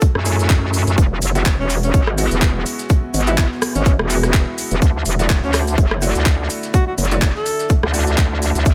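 A tight, tape-warm electronic kick opens this aggressive, gritty bass house excerpt at 125 BPM with a 16th-note swing, layered with a crisp garage kit of handclaps, hi-hat and rim click, a very quiet loose indie kit of hi-hat, shaker and snare, grainy background maracas and a deep, moody pad, before an up-front, saturated metallic wobble bass with chorus and sidechain pumping and brilliant concert grand piano stabs with dub echo arrive. A clear, close-miked alto saxophone carries a solo melody with dub echo from 1.6 to 7.7 seconds, while the harmony moves from F#m7 through Eadd9 to Dadd9 in a small room ambience.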